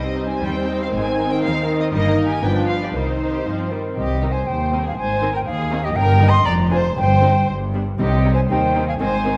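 A wet recital-hall reverb surrounds this restless, urgent excerpt from a quick classical-period orchestral movement in C minor at 119 BPM in a rubato 2/4, where veiled, con sordino violins carry the melody and a second line over lush muted violas, dark muted cellos and soft-edged double basses, with a present French horn section holding sustained chords until 3.7 s before an airy silver flute and hard-mallet timpani join at 4.0 s for the second section.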